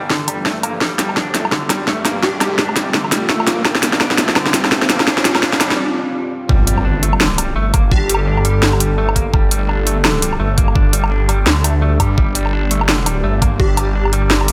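A tense, dark half-time drum and bass groove at 169 BPM in G minor swings its 16ths, with an overdriven, knocking electronic kick and an up-front kit of cracking snare, bright hi-hats and woodblock, all re-recorded in a small room, under a swirling, thick phased saw bass. A deep, warbling ambient pad sits in the background with vintage sampler grit and sidechain pumping, while a clean, hollow-bodied electric guitar picks tremolo-and-tape-echo arpeggios and a punchy, catchy unison lead flickers briefly on G4 through chorus and echo. A filter sweep on the pad and a riser carry the build-up, a short break follows at 5.8 seconds, and an impact lands on the drop at 6.5 seconds, everything bathed in a lush hall reverb.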